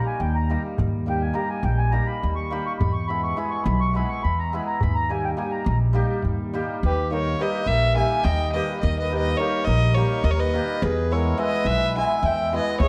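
Fiery and restless, this Balkan wedding-band excerpt drives along at 210 BPM in 7/8 in Eb phrygian dominant, with a mellow, slow-beating accordion carrying a solo over shimmering hammered dulcimer, a woody, thumpy pizzicato upright bass up front and a soft-handed clay darbuka in the background until 6.8 seconds, after which a gut-string violin with a smooth, period-style bowed tone takes the melody at 6.9 seconds, all set in a dark production with a moderate recital-hall reverb.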